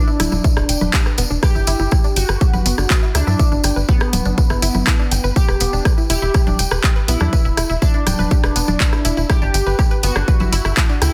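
A resonant, detuned polysynth melody with chorus, 12-bit sampler grit and delay opens this driving, melancholic melodic techno excerpt at 122 BPM in E minor alongside lush unison pluck arpeggios through digital delay, soon joined by a jingly acoustic tambourine, then at 0.2 s by a nasal sawtooth sequencer bass and a tape-warm house kit of congas, handclaps, hi-hat and rim click, with a punchy electronic kick up front from 0.4 s, as the synths, the bass and the kit's hats and percussion pump under sidechain in a dense, heavily limited mix with light reverb and faint mains hum.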